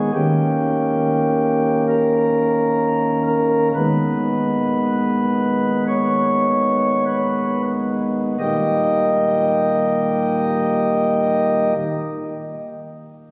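Classical chorale-style music for solo pipe organ on flute stops, dark and grave in mood, moving in a rubato 4/4 between 44 and 71 BPM and slowing through the opening 8.4 seconds. The soft, warm, romantic voicing sits up front and spans from deep Eb1 to Eb5, passing from Eb7 through Abm/Eb before settling on Eb at 8.4 seconds, where a second section begins. Recorded on a phone in the room, it carries a studio reverb that gives a wet church sound with a long decay, and this short cut from a longer piece has the organ sounding until 11.7 seconds.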